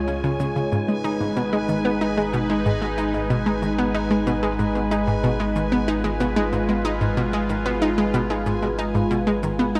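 A straight 4/4 pulse at 93 BPM carries this hypnotic, mysterious stretch of sequencer-driven ambient space music in G# dorian, where a bright, detuned analog pluck riff with chorus and tape echo sits up front beside an evolving, full-bodied resonant pad holding sustained chords, with a deep sine sub bass underneath, a bubbling stepped-filter texture of random filter steps floating high above, and a very quiet electronic shaker and woodblock, the mix dreamy and soaked in plate reverb.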